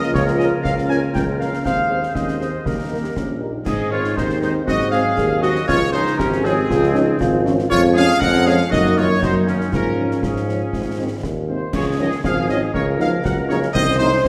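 A rousing, proud military-style march for wind band in 2/4 at 119 BPM, cut from a longer piece, opens with nearly the full band sounding at once. A trumpet section carries the melody up front with light vibrato and a soft attack. A mellow euphonium sits in the background and a woodwind section with a smooth top plays second lines, both with vibrato. A dark, tight trombone section holds very quiet sustained chords, while a warm tuba anchors the bass, up front yet distant and roomy. A concert snare drum, concert bass drum and clash cymbals with dark cymbals sound close and dry, and a very quiet French horn section joins the accompaniment at 0.4 s. The march begins in Ab major and moves to Db major from 7.7 s, all set in the lingering wash of a concert hall.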